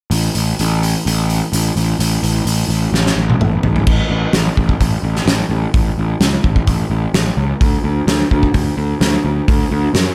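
A fuzzy, overdriven picked electric bass and a loose indie drum kit with a punchy kick, fat snare, dark cymbals and a pumping room sound open this restless, cathartic quiet-loud alternative rock excerpt in A major at 128 BPM, both up front under light reverb, with a drum fill from 2.9 to 3.9 seconds leading into a new section that runs to the end.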